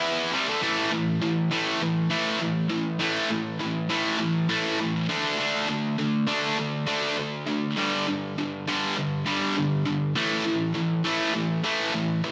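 Rock with a driving, aggressive mood, this short cut from a longer piece features a single high-gain electric guitar playing alone for the full 12.3 seconds. The picked, double-tracked guitar sits up front with a bright, distorted edge, ranging from G2 to E4. It moves through power chords on A5, D5 and G5 before settling back on A5 at 10.2 seconds, after an opening on Am. The straight, steady 4/4 feel gives the part a forceful push. A moderate plate reverb with a long tail and bright 1980s-style digital production frame the guitar in a spacious sound.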